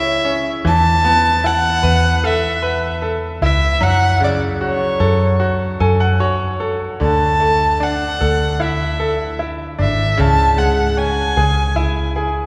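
Heartbroken and longing, this pop ballad excerpt sets a dark, woody solo violin singing its bowed, vibrato-laden melody over a brilliant grand piano, which adds a fill from 5.4 to 7.0 seconds, and a round, foam-muted fingered electric bass, all bathed in a wet church reverb as the chords move from C#m through Esus4, F#m and Dsus2 back to C#m.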